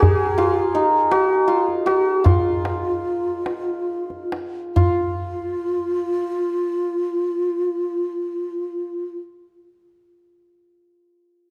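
A passionate, stately Persian modal ensemble piece in dastgah shur on F, moving slowly in a straight 6/8 at around 44-55 BPM and easing back through its first 4.8 seconds, with a shimmering, ringing hammered santur carrying the melody up front, a breathy, mellow low ney adding an expressive second line with vibrato, and a tight, close tombak played with soft hands until 5.2 seconds, all set in a recital hall's reverberant glow in this short cut from a longer piece.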